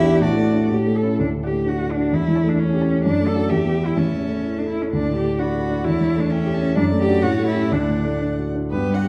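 In a quick 2/4 pulse of roughly 119 to 132 BPM, with a flexible rubato feel, this graceful, lively classical-period movement for piano quartet unfolds in D major, cut from a longer piece. A dark, mellow baby grand piano carries the accompaniment up front, its vintage tone and long sustain grounding the harmony, which circles through D, A7 and E minor before settling on D at 7.7 seconds. The cello plays a smooth, even second line beside it, also up front, its bowed vibrato sitting in a rich middle register. One violin takes the melody between B4 and B5 with a smooth, even vibrato. A second violin adds a focused inner line in the background. The recital hall reverb is wet and the production dark and warm, so the quartet sounds full across its nine seconds.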